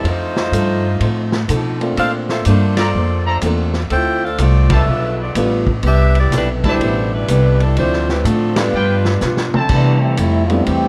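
Big band swing jazz at 124 BPM in C major, energetic and swinging, cut from a longer piece with a dark production and light reverb. A bright saxophone section with vibrato carries the melody up front, over a woody pizzicato upright bass, a vintage drum kit with a punchy kick and dark cymbals, and a boxy picked acoustic guitar with finger squeak in the background. A warm grand piano joins at 1.8 seconds, a brilliant, tight trumpet section adds stabs from 2.8 seconds, and after a drum fill the close-miked trombone section takes a solo at 9.7 seconds over a C6 chord.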